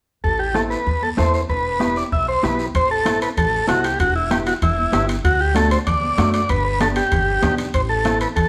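Driving and fiery, this cumbia excerpt moves at 192 BPM in a straight 4/4, centered on A dorian and tuned slightly low to A4 = 439 Hz. A vintage combo organ carries the melody up front, its buzzy, clean tone shaped by heavy vibrato, while a pizzicato upright bass with steel strings gives a woody, warm low end. A dark, compressed electric guitar, played fingered, adds clean accompaniment from 0.5 seconds. The percussion sits mostly in the background: a soft-beater bombo, high-tuned congas struck with hard hands, and a raspy guiro that sounds close and dry, with ringing metal-shell timbales joining at 2.7 seconds as the second section begins. The harmony moves from Am and Em into D and G before returning to Am. The band sounds like it is playing live together in a moderately reverberant stone room.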